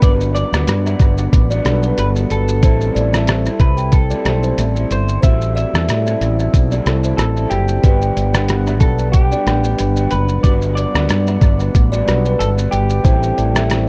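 A lightly swung 92 BPM groove in 4/4 comes from a muffled, pitched-down, sampler-style drum kit with a thumpy kick, hi-hat, rim click and shaker, sitting up front beside a round, dark fretless bass, while a slightly broken-up electric guitar carries the melody through subtle chorus and analog delay, a woody, ringing kalimba plays a second line, and a second guitar, wobbling with lush chorus and warbly pitch drift, and soft, mellow electric-piano-like synth keys in the background supply the accompaniment as the harmony moves between Gmaj7 and Am7 in G major, giving this hazy, sunny indie and bedroom-pop piece an echo-heavy cassette-tape sheen.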